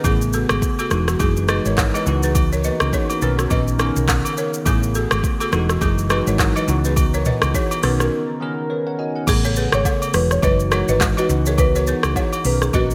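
Swung sixteenths over a 104 BPM afro-pop drum kit, with its deep kick, metallic hats, handclaps, rim clicks, shaker and toms, anchor this breezy, joyful afrobeats cut alongside a dark, round hollow-body electric bass, quiet agogo bells and woodblock, a bell-like tine electric piano with analog chorus that fills the brief break at 8.4 seconds, a hollow, flute-like pad holding soft sustained major-ninth and minor-eleventh chords, and a woody, delayed balafon riff, before a buzzing marimba melody arrives at 9.3 seconds, all set in a lush hall with bright 1980s-style digital sheen.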